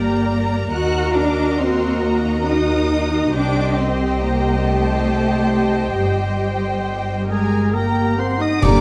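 A dark, warm scoring-stage sound with moderate reverb frames this short cut from a longer cinematic film score, an emotional orchestral passage in 6/8 at a slow, rubato 46 BPM in G harmonic minor, full of longing and bittersweet feeling. From the start the strings carry everything: a lush violin section sings the soft-edged, expressive melody high above a second violin line, while clear, intense violas fill the middle and a rich, focused cello section joins a smooth, distant double bass section underneath. The harmony moves from G minor to E-flat minor, C minor and back to G minor. At 6.0 seconds a percussion group of cymbal swell, bright clash cymbals and concert bass drum enters, followed at 7.3 seconds by a roomy oboe line and mellow French horns holding sustained chords. At 8.6 seconds the full band lands an accent, with a background clarinet, a pure, hollow small flute group and hard-mallet timpani striking together.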